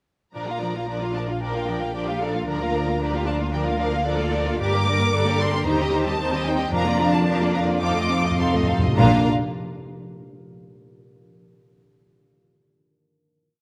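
Lively and cheerful, this short, complete romantic orchestral piece in Bb major moves at a brisk 111 BPM with uneven beats and gradually slows from 3.5 s toward a final Bb chord. Lush bowed violins carry a smooth, vibrato-rich melody over a second violin section and distant violas rocking between two notes and holding chords, while a woody double bass section sustains the bass, a soft-attacked, expressive cello section adds a background counter-melody, and a thumb-plucked concert harp rings out rocking broken chords. Round, soft-mallet timpani enter at 6.7 s with single strokes and a roll that leads into the close, and the harp rings on alone until 11.3 s in a moderate concert hall reverb.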